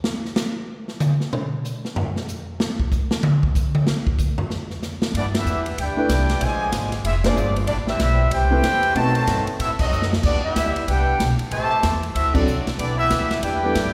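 A swinging 188 BPM big-band jazz excerpt in G major opens with a solo from the airy, punchy drum kit for the first 5.1 seconds, then a woody, thumpy upright bass, a clear trumpet section carrying the joyful melody, and a warm, lightly vibratoed trombone section enter together, with a dark, mellow upright piano comping in two spots, band accents, and a brief drum fill at 9.9 seconds, all bathed in the reverb of a concert hall.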